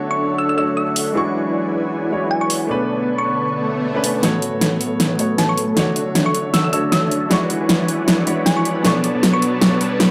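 A dense, compressed supersaw riff opens this bright, playful future bass excerpt, huge and thick with detuned unison voices and a sub octave, sitting up front over a dark, mellow baby grand piano whose long-sustaining accompaniment trails a dub echo. Beneath them, a very quiet, airy pad holds soft, breathy chords with chorus and a slow attack. A round, tine-like synth pluck resembling a thumb piano carries the gentle melody high above, its decaying notes thickened with chorus and delay. At 1.0 seconds an electronic dubstep drum kit arrives in a swung half-time feel, its huge snare and bright hats overdriven and pushed to the front. Harmony moves through Dmaj7, E13 and Bm9, reaches A69, then cycles through Dmaj7, E13 and Bm9 again. A faint electronic swell at 3.6 seconds leads into a build-up where a drum fill runs and a filter sweeps across the supersaw, while a riser continues underneath, all in light reverb.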